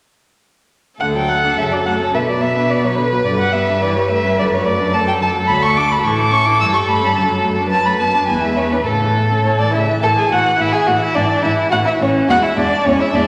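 Cheerful and spirited, this quick classical-period movement for string quartet moves at 107 BPM in a straight 2/4, opening in D major before turning toward A major at 5.5 s, with all four players entering at 1.0 s. Up front, the first violin carries the melody with a soft attack, expressive portamento and warm vibrato, while the second violin sings a rich, even second line and the viola fills the accompaniment with a focused tone and smooth top. The clear cello anchors the bass, and the whole quartet sits in a wet scoring-stage reverb as a fresh section begins at 10.0 s in this passage cut from a longer piece.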